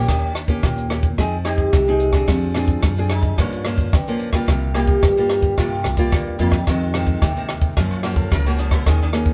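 A sitar takes the melody from the first moment in this yearning, nostalgic cut of samba and choro in F minor at 109 BPM, its buzzing, shimmering tone ringing with sympathetic strings over a small, fingerpicked nylon-string guitar, moving through chords such as Fm7, Gm7b5, C7sus4 and Gbmaj7. Pizzicato upright bass with a woody sound and a compact cocktail kit of hi-hat, rim click and a punchy kick join at 0.1 seconds, the dry drums sitting up front. The band plays together in one room with moderate studio reverb, and the passage is lifted from a longer piece, ending at 9.3 seconds.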